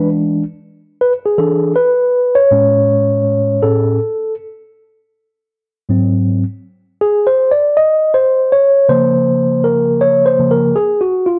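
Swung sixteenths in 4/4 set the easy gait of this cool, mellow hip hop fragment, where a clean, up-front tine electric piano plays alone through E7, Amaj7, G#7 and C#6, soaked in a wet spring reverb and captured on a home cassette recording.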